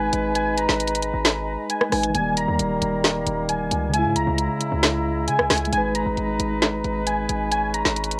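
Dark, melancholic lo-fi trap in a half-time feel, heard as a short cut from a longer piece, where warbling, detuned synth keys with chorus and a low-pass filter carry a nostalgic high melody over a mellow tine electric piano and a distant, roomy brass ensemble holding sustained chords with light vibrato, both colored by cassette tape. A punchy, heavy 808-style bass with a noise layer and fast, decaying attack anchors the low end, while an up-front electronic trap kit enters at 0.1 seconds with warm hi-hats, rim clicks and a woody snare. The chords move from G#m to D# to C#m and back to G#m, all wrapped in light reverb and a homespun cassette sound.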